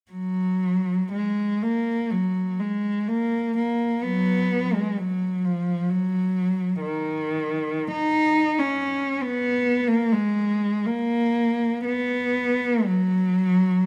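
A lone bowed cello opens this serene, lyrical classical passage, cut from a longer piece, playing freely with rubato from 0.1 to 13.9 seconds, its warm, expressive tone shaded by vibrato and portamento and set up front through close, detailed microphones within a moderate recital hall reverb.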